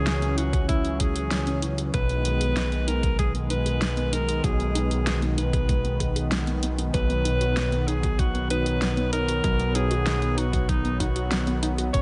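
A straight 4/4 pulse at 96 BPM comes from an overdriven electronic kick drum, knocking in from 0.5 s, and an overdriven pop drum kit with a fat snare and warm hi-hats, both carrying the character of a small room. In this cinematic, moody synthwave excerpt, a thick, detuned sawtooth bass with tube saturation sits up front, while a smooth, vintage pad with lush chorus, sidechain pumping and shimmer reverb holds chords moving from C#m to G#m/B to B, and a very quiet lo-fi, warbling pluck plays arpeggios. Over this, a breathy alto saxophone with light vibrato carries the pop-style solo melody through tape echo and shimmer reverb, in a lightly reverberant mix with a gentle top end that stops at 10.5 kHz.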